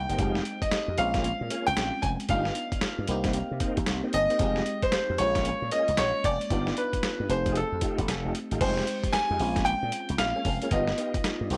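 New jack swing R&B with a punchy, confident strut and a swung sixteenth-note feel, led by an up-front baby grand piano whose brilliant, intimate tone carries audible action noise and long sustain. Underneath, a glassy FM electric piano with chorus and phaser supplies bell-like accompaniment, an amped slap bass runs through an envelope filter, and a smooth tonewheel organ with fast rotary speaker adds stabs in the background. A gritty, overdriven sampler-style drum kit with a thumpy kick and compressed, small-room character drives the whole fragment, which moves through minor-ninth and altered dominant chords before shifting to a new section at 8.6 seconds.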